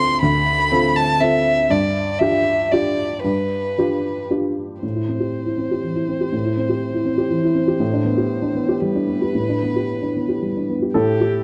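In a rubato 3/4 pulse drifting between 111 and 123 BPM, this longing, melancholic neoclassical fragment sets an intimate, close solo violin, played sul tasto with light vibrato, a soft attack and an airy bow, over a dark, woody, slightly detuned upright piano whose mellow chords move from Dm7 through G7 to Am7 and G/A, both parts up front in a lightly reverberant, warm production.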